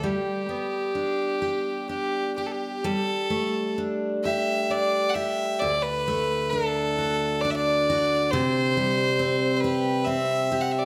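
A lone bowed fiddle and a picked steel-string acoustic guitar begin together, both placed up front, in this short cut from a longer Celtic slow air. The fiddle carries the melody with a bright, nasal, earthy tone, a single player moving freely in rubato over uneven beats in three-time. Beneath it, the full-bodied jumbo guitar picks a warm accompaniment that reaches down into the bass. The harmony drifts from G to Gsus2 at 2.8 seconds, then on to D and a bare C5. The mood is nostalgic and tender, with the same opening phrase returning, and a moderate recital-hall reverb gives the pair a gentle sense of space.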